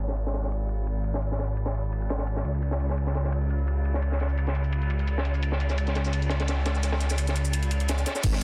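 A crunchy, rolled-off acoustic breakbeat of ride and high-tuned snare runs at 171 BPM in straight 4/4 alongside a layered electronic kit of bright overdriven hats, crash, rim click and shaker, while a deep, rumbling detuned saw bass sits up front in this lush, warm liquid drum and bass excerpt, a filter sweep spans the opening 8.2 seconds, and a gritty, thumpy kick lands just at 8.2 seconds in a dense, heavily limited, nearly dry mix.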